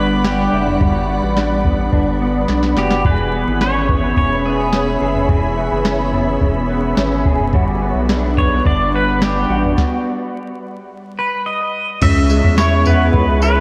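Dream pop at 107 BPM in 4/4, ethereal and dreamy, built on a round analog bass, slightly broken-up electric guitar arpeggios with ensemble chorus and tape echo, and an airy detuned pad holding sustained chords over a soft vintage rhythm box with a deep kick, tonal snare, tambourine and 12-bit grit. A bright, twangy pedal steel carries the melody with lush chorus and tape echo, sounding from 0.0 to 5.0 seconds and returning at 8.4 seconds, while the harmony moves from Gmaj7 to E6 and back, breaks for a stop at 9.8 seconds, and lands on C#m7 at 12.0 seconds. The mix is soaked in lush hall reverb and vinyl crackle, and this fragment is cut from a longer piece.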